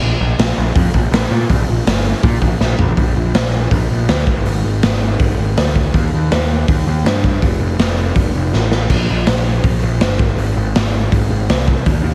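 Dry, heavily compressed and radio-styled, this rebellious, rowdy punk rock cut opens on a fuzz-laden, overdriven picked electric bass before a raw garage drum kit with a punchy kick, gritty saturation and a dark, rolled-off top joins at 0.4 s, both parts sitting up front as drum fills at 2.6 s and 8.5 s punctuate the straight 4/4 drive.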